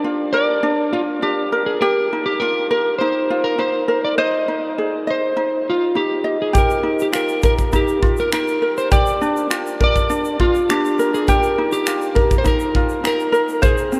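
A dark, slightly broken-up electric slide guitar carries the melody over a light, fingerpicked ukulele in this sunny, carefree acoustic pop excerpt in Eb major at 102 BPM, with an airy, polished drum kit of finger snaps, punchy kick and shaker joining at 6.5 seconds, all set in a vast, echoing cathedral-like space.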